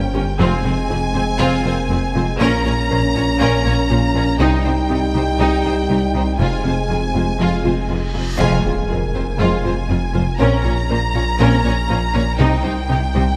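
A lush violin section carries the melody from the opening moment over mellow French horn chords, a soft, round synth pluck playing arpeggios through chorus and delay, a thick saturated sub bass, and an intimate felt-muted upright piano whose action noise is faintly audible. A second violin line, viola accompaniment, cellos and double basses join almost at once in this vast, futuristic hybrid film cue at 120 BPM in F minor, which moves through Fm, Bbm and Cm inside a moderate scoring-stage reverb. At 7.9 seconds a dark reverse cymbal leads into a huge impact as the band accents the repeat of the theme at 8.4 seconds, and the harmony later turns to Bbmadd9.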